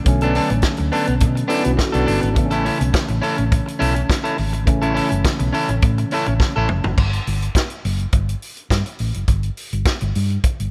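A sultry, danceable disco groove at 104 BPM in straight 4/4 opens with a worn, slightly out-of-tune tine electric piano heard through its built-in speakers, joined almost at once by a picked electric guitar at the edge of break-up, touched with spring reverb and sitting up front. Beneath them, a dark, round hollow-body short-scale bass, fingered and amped, anchors the low end, while a vintage acoustic drum kit with a punchy kick, medium-tuned snare, hi-hat, toms and crash cymbal sounds natural in a small room. The harmony moves from Bm7 to A, and a drum fill from 6.4 to 7.0 seconds closes the first section. By 7.0 seconds the chords drop out, the piano and guitar have fallen away, and bass and drums carry on alone until the cut at 10.7 seconds. Small-room ambience surrounds the whole track, which is cut from a longer piece.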